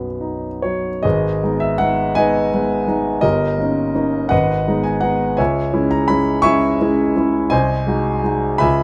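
Classical romantic character piece for solo concert grand piano, lyrical and warm in a compound metre, moving with rubato through minor-key harmony over these 8.8 seconds cut from a longer work. The piano sits up front and intimate, spanning deep bass to the upper register, with long natural sustain and audible action noise that brings the listener close to the instrument. Close, detailed miking and light reverb keep the sound clear and immediate.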